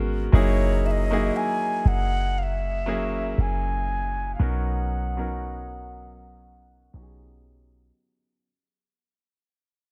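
A slow 59 BPM pulse in 4/4 with a light 16th-note swing sets a sensual, longing mood in this contemporary R&B excerpt, where a clean 808-style bass with a deep, boomy sine tone and fast, decaying attack sits up front beneath a clear, natural grand piano moving from F#13 to Bmaj9 at 4.4 seconds. An airy, clay-toned alto ocarina carries the melody from 0.4 seconds, its straight, tongued tone bright with lifted highs and expressive phrasing, while the piano and ocarina pass through a low-pass filter. Light small-room reverb surrounds the parts as a filter sweep and fade-out run from 0.3 seconds to the close at 8.5 seconds.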